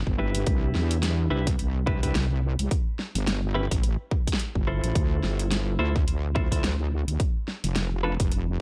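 A heavy, saturated wobble bass with a detuned sawtooth tone and chorus sits up front in this swaggering, funky glitch hop clip, driven by a punchy electronic kick and a layered dubstep kit with a huge snare and metallic hats, all swung on the sixteenths, while clean picked electric guitar stabs drift through spring reverb, tape echo and sidechain pumping over a Cmaj7 to A7(no3) to Dm7 progression, captured in a dry, gritty recording with a dulled top end.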